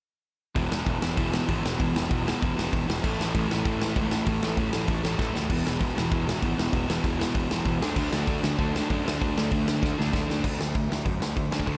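A straight 4/4 pulse at 194 BPM drives this rowdy, energetic punk rock clip, led by a big, up-front acoustic drum kit with a punchy kick, medium-tuned snare, hi-hat and bright crash cymbals that drops in fills at 5.2 and 9.8 seconds, while an overdriven semi-hollow guitar and a sludgy distorted guitar in the background pick a riff through E5, A5 and D5, the sludgy guitar stopping at 10.4 seconds, over a growly fuzz bass sitting low beneath them, all set in light reverb.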